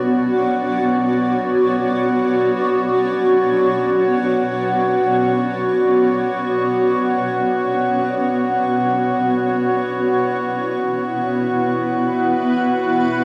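A granular cloud pad sits up front in this spacious, serene ambient excerpt, its blurred, detuned sustained chords evolving under their own built-in reverb. A reedy, breathing pedal harmonium holds a mellow drone beneath it for the full 13.2 seconds, and the harmony moves from Bm to E5/B at 9.1 seconds. The home cassette recording is bathed in a wet spring reverb.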